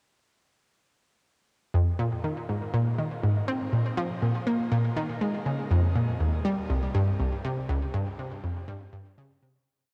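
This short, complete ambient piece sounds like worn, warbling old cassette tape, its pitch drifting unsteadily inside a moderate shimmer reverb with a long 6.9-second tail. A single analog pluck carries everything alone, entering at 1.7 seconds and sounding from C2 up to C4 in F minor at 121 BPM in a straight 4/4. Its tone is round and bright, built from detuned sawtooth and pulse waves with a noise layer, a fast attack and short decay, and it sits up front, coloured by chorus and delay. The synth repeats a 12-step sequence that drifts against the bar, giving the piece a hypnotic, mysterious pull. A fade-out begins at 7.0 seconds and carries the piece to its close at 9.7 seconds.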